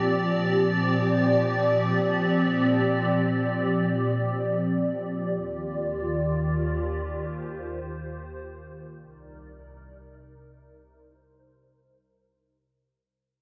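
A hollow, flute-like analog synth pad plays alone in free time through this floating, blissful hip hop fragment, its detuned, warbling tone softened by ensemble chorus, tape echo and a low-pass filter under a filter sweep and a fade-out, moving from Bb69 to Ebmaj9 at 5.3 seconds and Cm9 at 9.0 seconds in a lush hall reverb with a dull top end, tuned to A4 = 439 Hz.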